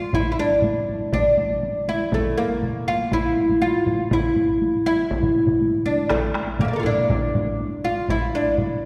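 A straight 4/4 pulse at 120 BPM drives this short, powerful and ceremonial fragment of Japanese traditional taiko drum ensemble music, cut from a longer piece. Two taiko ensembles played with heavy sticks sit in the background: one sounds roomy and live, while the other is close and dry and joins at 1.1 s before dropping out at 7.0 s. Two solo taiko drums also play; one uses heavy sticks in a live room, and the other is struck with hard sticks and has a compressed, saturated bite. Up front, a plectrum-plucked oud carries the melody from A3 to F5, its fretless double strings giving a woody, warm tone. The whole performance is heard from further back in a wet concert hall with a 2.2-second reverb tail, lasting just under 9 seconds.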